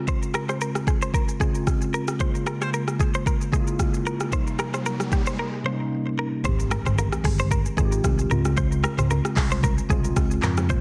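A mellow tine electric piano with a phaser sits up front in this breezy, romantic, lightly swung afrobeats excerpt, joined by a bright, twangy clean guitar riff through digital delay and an electronic afro-pop kit with a deep kick, metallic hats, handclaps, rim clicks, shaker and toms, while a background riser from 3.8 s builds to an impact at 6.4 s, where a punchy fingered electric bass and very quiet, soft-handed congas and bongos enter over seventh chords in a dense, heavily limited modern master.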